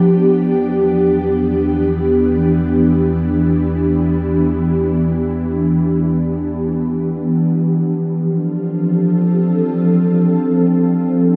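Serene and peaceful, this free-time ambient fragment from a longer piece sets an ethereal, airy pad with ensemble chorus up front, holding sustained chords from Em7 to Dm7 at 7.5 seconds, while a deep, round sub bass fades out beneath it until 7.4 seconds, all bathed in a wet cathedral reverb.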